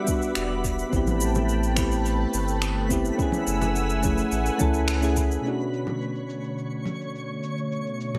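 Mellow, chorused electric-piano-like synth keys sit up front in this relaxed, wistful sunset chillout excerpt in B minor at 106 BPM, moving through Em9, Am9 and F#m9 over a thick, nasal detuned unison pad, a twinkling granular shimmer, a round, deep sub bass, a soft overdriven electronic kick, dub-echoed cabasa and finger snaps, and bright vintage congas in the background, until the kick and bass drop out near 5.4 seconds and filter sweeps on the keys and pad carry it through a closing Bm9 chord in an echo-heavy digital ambience.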